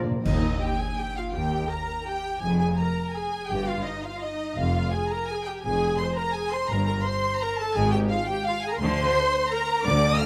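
A classical orchestral ballroom waltz in a sweeping, elegant mood, this short cut from a longer piece moves in three with uneven, rubato beats. It opens on a timpani fill struck with soft mallets for a round tone, and at 0.3 seconds a band accent lands as bright clash cymbals and concert bass drum enter together with the double bass and cello sections. The violin section carries the melody high in its range with rich, expressive vibrato, while a second violin line sits in the background beneath it. Up front, the viola section supplies a focused, bowed accompaniment, and the cellos add a soft-attacked bass with portamento that pairs with a lush, smooth-topped double bass section. Close, detailed microphones and light reverb keep the bowing intimate as the harmony travels from Eb through Fmadd11 and Gmadd11 to a closing Bb/D.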